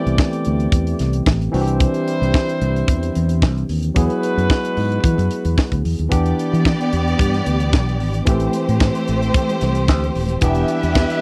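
Sultry and driving, this short disco cut from a longer piece moves in a straight 4/4 groove with a dry, close 1970s studio sound and little reverb. A tight funk drum kit sits up front, its high-tuned snare, tight kick and hi-hat giving a small-room punch, while a fingered electric bass, direct and amped, sits just as forward with a warm tone. A barky tine electric piano, bright and clean through a combo amp, carries the accompaniment throughout over chords moving from Am7 through Cadd9 and Eadd9. Punchy horn stabs with light vibrato cut in from the start, drop out at 5.8 seconds, and return at 10.4 seconds. At 6.1 seconds, as the harmony shifts to Em7, a bowed studio string section enters on a second line, expressive with vibrato, portamento and a smooth top.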